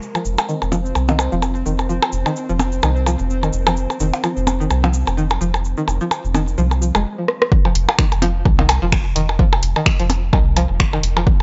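A swung 128 BPM pulse in 4/4 drives this quirky, hypnotic minimal techno excerpt, which opens with a grainy acoustic cabasa, a slow-attack pulsing gated texture with chorus, tape-toned percussion blips and a round, nasal analog bass, with the texture and bass both sidechain-pumped. A twangy, string-like resonator pluck carries the riff through chorus, phaser and analog delay under a filter sweep. The cabasa and gated texture stop at 7.0 seconds. At 7.3 seconds a punchy, overdriven drum machine of finger snaps, hi-hat and rim click enters with a drum fill, and the drop at 7.5 seconds brings in an overdriven electronic kick. The dry, gritty hardware sound carries light reverb, transformer saturation and a rolled-off top end.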